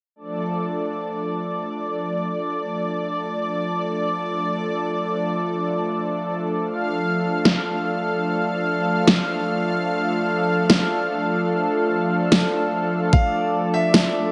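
A thick, detuned unison pad of sawtooth and square waves opens this heavy, chaotic wobble dubstep fragment in free time, its soft-attack sustained chords shimmering with chorus and pumping against the sidechain over a single minor chord. At 7.5 seconds a huge, layered electronic snare arrives up front, low-pass filtered and re-recorded in a small room. At 13.1 seconds a brilliant concert grand piano adds a brief high melody through tape echo, joined by a single knocking, overdriven kick, all set in a moderate, lush hall reverb with a dulled top end.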